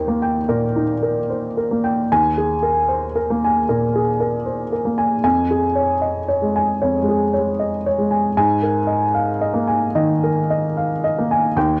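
Intimate and hopeful, this neoclassical minimalist piano fragment, cut from a longer piece, features a lone dark upright piano played with a rubato feel, its mellow, woody tone sitting up front with audible action noise and a slightly detuned character. The sound has the worn, warbling quality of old cassette tape, with pitch drift and light reverb around it, as the harmony moves from Eb through Absus2/Eb and Db/F before settling on Absus2 at 8.4 seconds.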